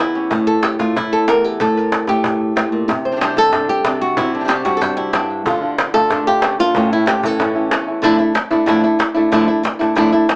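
A straight 4/4 pulse at 186 BPM drives this mournful, dramatic flamenco passage, cut from a longer piece. A fingerpicked acoustic flamenco guitar carries the melody up front from the very start, ranging from E2 to C5 and trailed by a tape echo. A cajon joins almost at once with a woody, compressed, saturated tone, soft hands and faint snares, sitting close in the mix. From 2.9 to 8.0 seconds a second fingerpicked guitar adds quieter stabs between A2 and G4, its tone warm and acoustic. The harmony moves from A5 through Csus2, Dm and A before settling on Dmadd9 as a new section begins at 8.0 seconds. A short, wet small-room reverb and a small-speaker character give the whole recording a close, boxy intimacy.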